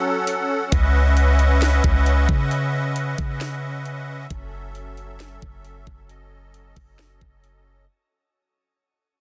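Atmospheric cloud-rap at 134 BPM in a half-time 4/4 feel, this short excerpt cut from a longer piece has a melancholic, hazy mood and fades out across its full 7.9 seconds. A reedy musette accordion opens the clip with sustained chords, its shimmering tuning placed up front and pumping under sidechain compression. Electronic trap drums arrive at 0.3 seconds with a knocking kick, sharp snare and metallic hi-hats, and a deep, round 808-style bass joins at 0.7 seconds, dark and soft with a fast attack and decaying tail. The harmony moves from F#m to C#m11 and settles on F#m7 at 4.3 seconds. The mix is dry, with little reverb, and the master is dense and heavily limited in a modern style.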